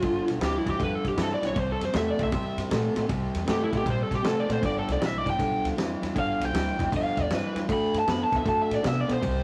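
A dark, overdriven lead guitar solo opens this swaggering, soulful electric blues shuffle from the first second, riding over a slightly broken-up, lo-fi rhythm guitar riff, a woody pizzicato upright bass and a dry soul drum kit with fat snare, tight kick and ride cymbal, heard through moderate stone room reverb in a rough rehearsal-room recording cut from a longer piece.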